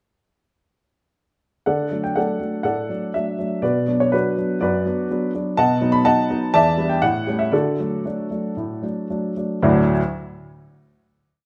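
A baby grand piano, intimate and up front with its action noise audible, plays this short, complete classical-period sonatina in D major alone from 1.7 to 10.0 s, carrying a tune over repeated chords. The mood is elegant and cheerful, moving in 4/4 at roughly 112-127 BPM with a rubato feel, as the harmony passes through B minor and E minor seventh before settling on a final D major chord at 9.6 s. A moderate recital hall reverb surrounds the natural piano tone.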